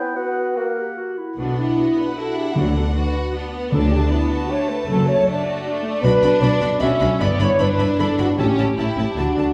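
An expressive violin section with rich vibrato carries the melody of this cheerful, spirited classical-period movement in B minor, taken at a quick 153 BPM in 3/4 with a rubato feel. It opens briefly with clarinet, a very quiet, airy flute section, oboe and an up-front bassoon. At 1.4 seconds the strings and horns enter: a bright, more distant second violin line, focused violas, lush cellos in the background, intense double basses, and mellow, roomy French horns holding sustained chords, with hard-mallet timpani on calf heads joining from 2.6 seconds. A resonant hall reverb surrounds the orchestra as the harmony moves from B minor through D major to an A7 near the end.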